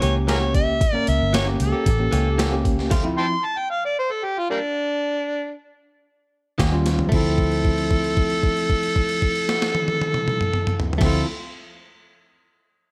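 A gritty, overdriven harmonica leads this smoky, brooding soul blues over tine electric piano, bright spring-reverbed stabs from a clean direct electric guitar, a dark foam-muted fingered bass and a thumpy, compressed boom bap drum kit, until the accompaniment drops out by 3.3 seconds and the harmonica carries on alone, then the band returns around 6.6 seconds, with a drum fill leading into a long held note from 7.1 seconds.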